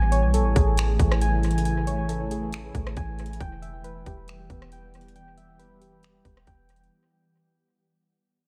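Opening at once on an ethereal, detuned pad holding sustained chords with ensemble chorus and sidechain pumping, alongside soft, round electric-piano-like synth keys arpeggiating through chorus, tremolo and tape echo, this dreamy, blissful cloud-rap excerpt moves at 137 BPM in a half-time feel, shifting from Amaj7 to Em at 3.4 seconds. A deep, boomy 808-style bass sits up front, and at 0.1 seconds an overdriven trap kit joins with a hard-clipped kick, metallic hi-hats, finger snaps and rim clicks, its hits trailed by tape echo. The echo-heavy mix carries light reverb and fades out across its full length.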